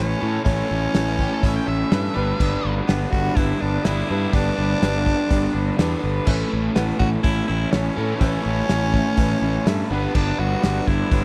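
A growling tenor saxophone carries the melody in this swaggering, sunny classic rock excerpt, its raspy, breathy tone touched with light vibrato and a slapback echo. Beneath it, a fuzz-soaked fingered electric bass sits up front with a growly, punchy bite, while two overdriven guitars play riffs in the background: one dark and compressed, the other raw and bright. A cloth-damped drum kit enters at 0.5 seconds with a fat snare, tight kick and dark cymbals, and an octave-fuzz lead guitar adds a brief distorted second line between 1.2 and 2.7 seconds. A very quiet upright piano offers woody, intimate accompaniment with its action noise audible. The harmony alternates between Aadd9 and G in a straight 4/4 groove, captured in a dry, close 1970s-style studio sound.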